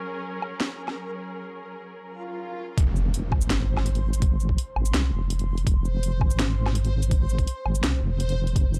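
Dark and spacious, this short cut of half-time drum and bass runs at 166 BPM in F phrygian, with digital ambience and a dusky production. It opens on muted symphonic strings, veiled and bowed with vibrato, holding a sustained Gbadd9 chord that pumps against a sidechain, while a reversed, granular texture floats above with its own reverb and a dreamy, detuned shimmer. An electronic drum kit comes in at 0.4 seconds, its cracking snare and bright hats roughened with overdrive, alongside shaker and woodblock in a small-room sound. After a break, an electronic swell leads into the drop at 2.8 seconds, where an impact lands and the harmony moves to Fm. Here a deep, soft wobble bass with chorus arrives up front, sawtooth and sine layered into a dark, sustained low end, joined by a gritty, thumpy kick that is pitched down and driven hard.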